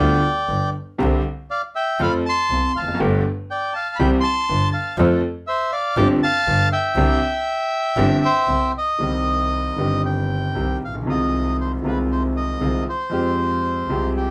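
A reedy, dark bandoneon sits up front carrying the melody in this melancholic, tense tango cut from a longer piece, moving at 119 BPM in 4/4 with a rubato feel and shifting from C major to C minor at 9.0 s. Beneath it, a clear concert grand piano with deep bass and a smooth, vintage character supplies the accompaniment, while a single bowed double bass adds an earthy, biting line with light vibrato. The trio plays live together in one room, wrapped in a wet studio ambience.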